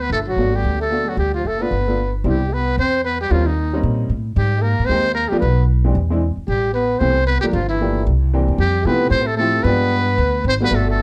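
Small-group swing and bop jazz at a brisk 226 BPM in C major, this sophisticated, swinging excerpt features a metal-muted trumpet carrying the melody up front with a buzzy, breathy, whispered tone, light vibrato and scooped notes bathed in plate reverb. A distant, roomy trombone plays a second line beneath it, while a woody, thumpy pizzicato upright bass on gut strings sits forward in the mix. A clear baby grand piano with short sustain enters at 0.4 s to comp through rich changes such as Abmaj9, Eaug7 and G7b9, all within a dark, warm production with light reverb.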